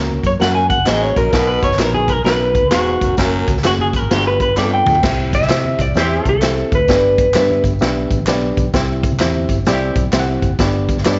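A bright, reedy electric piano and a round, foam-muted electric bass open this danceable, uplifting stretch of uptempo 1960s-style soul at 130 BPM in F# major, swung in 4/4 and joined at once by low-tuned congas that are barely audible, a roomy big-band drum kit with dark cymbals and a punchy kick, very quiet tambourine and handclaps, an up-front, slightly broken-up electric guitar melody steeped in spring reverb that plays until 7.6 s, and a gritty baritone saxophone riff, while a drum fill leads into a new section where a tight, clear horn section adds brief second-line figures at 6.0 and 9.7 s.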